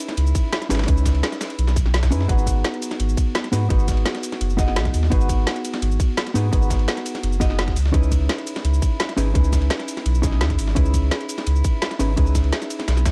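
A dark, clean hollow-body jazz guitar with tape echo opens this soulful, rolling liquid drum and bass excerpt, moving between C#m9 and G#m7 over two layered drum kits: one with a woody snare, metallic hats, cabasa and ride, and a quieter, gritty sampler-style kit whose snare and cymbals are high-pass filtered. A round, up-front sine sub bass arrives at 0.2 seconds and a tight electronic kick follows at 0.4 seconds, anchoring the groove. The mix is dry and dark, with the sub bass sitting loudest.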